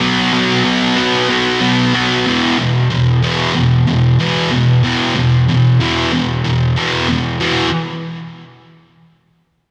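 A thick, bright, double-tracked fuzz guitar sits up front from 0.0 to 7.7 seconds, picking distorted B5 and then E5 power chords through a digital delay in this dark, angsty rock fragment at 93 BPM in a straight 4/4, cut from a longer piece and washed in a wet scoring-stage reverb for a big arena sound.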